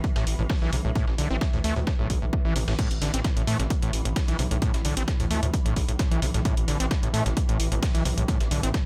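A punchy, tape-warm electronic kick sits up front in this excerpt of driving peak-time techno at 131 BPM, with a relentless, hypnotic mood built over an A5 chord. A gritty, nasal driven synth bass and a squelchy, screaming acid line with distortion, chorus and digital delay both enter at 0.2 seconds, pumping against the kick alongside a swarming, detuned drone with granular texture and built-in reverb in the background. A layered techno kit adds crash cymbal and hats re-recorded in a large room, while a compressed, dusty soul sampler-style kit tucks filtered hi-hat and a medium-tuned snare behind everything in a digital ambience.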